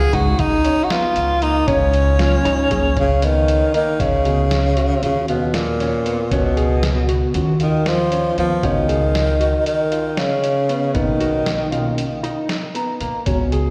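Progressive instrumental band music in a bright, driving 9/8, cut from a longer piece and heard as a live gig through the venue's PA in a recital hall, where a breathy, whispered tenor saxophone carries an intimate, close-miked jazz melody with vibrato over clear concert grand piano arpeggios, a woody gut-string upright bass played pizzicato, a tine electric piano accompaniment through its built-in speakers, and a muffled, pitched-down sampler-style drum kit whose kick and snare drop out at 3.2 seconds before returning, with slapback echo on the saxophone, piano and electric piano, the saxophone stopping at 12.0 seconds and the electric piano adding a fill at 12.5 seconds.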